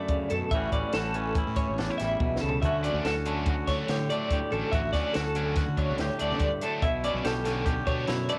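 A twangy, up-front electric guitar and a bright, clean twelve-string playing tremolo-tinged arpeggios open this wistful, intricate math rock and midwest emo excerpt in D major at 143 BPM in 5/4, joined by a tight, high-tuned cocktail drum kit that plays a fill at 2.2 seconds, before a biting, double-tracked overdriven guitar riff enters at 2.8 seconds, all over a growly fuzz bass, with the guitars carrying a cassette-tape haze in a small home-recorded room as the chords move from Bm11 through A13 to Dmaj7.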